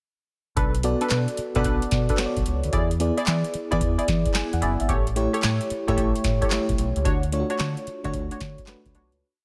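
A digital ambience surrounds a slick, confident new jack swing R&B piece at 111 BPM in B minor, where a booming analog drum machine sits up front with a deep kick, crisp snare layered with handclaps and metallic hi-hats in a hard-swung beat. A round, dark fingered electric bass bounces through a swung synth-funk line with muted ghost notes over Bm7, E7, A7 and Dmaj7. An FM electric piano with tremolo adds syncopated chord stabs, grace notes and a short fill at 4.1 seconds, while a punchy, nasal polysynth with chorus, phaser and a filter sweep jabs short funky stabs before the whole piece fades out from 7.1 seconds.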